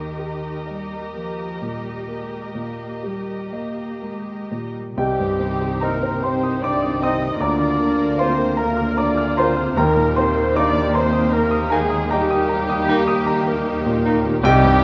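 Lyrical and passionate, this excerpt from a romantic movement for piano and orchestra in Eb major unfolds in a slow, rubato 12/8, with a present, polished baby grand carrying the melody up front over veiled, con sordino strings: violins on melody and a second line, a lush viola section, and cellos on the bass. At 5.0 seconds the orchestra fills out as an airy flute ensemble and a soft oboe join, alongside vintage-toned horn and trombone sections holding chords, dark trumpet stabs, and muted double basses, with a bright clarinet and a mellow bassoon following at 5.8 seconds. A barely audible timpani touch arrives at 9.8 seconds, all within a moderate concert hall reverb.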